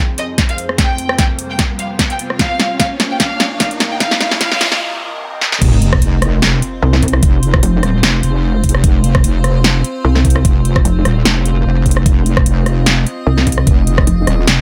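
Menacing and aggressive, this heavy wobble dubstep passage, cut from a longer piece, rides a swung, half-time groove. It opens on a build-up where an evolving, morphing wavetable pad holds sustained chords through chorus, phaser and its own reverb, pumped by sidechain, while a rich, lush symphonic violin section carries a brief bowed melody with vibrato and delay, sounding distant. A big-room dance drum kit with a punchy snare and metallic hats drives a fill under a knocking, overdriven electronic kick, and in the background a riser, noise sweep and sub drop push the tension through a short break. At 5.6 seconds the drop lands with an impact, and a square-wave wobble bass, detuned and saturated with chorus and overdrive, takes over the low end up front. From 6.8 seconds a pulsing pluck wobble bass, also heavy and compressed, joins it as the loudest part. The mix stays dry and high-passed, with the drums and basses pressed forward.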